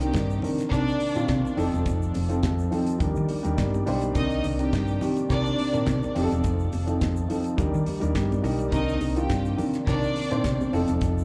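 Disco at 105 BPM in C dorian, glamorous and driving, captured live through a club PA with light room ambience, where a punchy, round hollow-body bass and a damped 70s kit with fat snare and tight kick drive Cm9, F7 and Ebmaj7 changes under an up-front dark grand piano (with a fill at 3.0 seconds) and a lush, distant bowed violin section carrying a second line through tape and slapback echo, while a faintly overdriven tonewheel organ on fast rotary sustains chords and high-tuned congas and a grainy egg shaker sit quietly behind.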